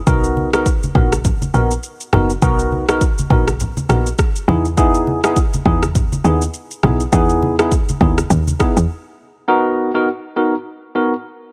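Joyful and breezy, this afrobeats excerpt moves at 102 BPM in B major with a swung sixteenth-note feel, as a clean tine electric piano with lush chorus shifts between Bmaj7 and Emaj7 up front alongside a woody, punchy log drum bass and an overdriven deep house kit of deep kick, rim click and shaker roughened by vintage 12-bit sampler grit. Bright, low-tuned congas sit close and dry in the background, and the whole groove sits in a digital ambience. At 8.9 seconds the drums and bass drop out for a short break, leaving the electric piano alone to carry into a return to Bmaj7 at 9.5 seconds.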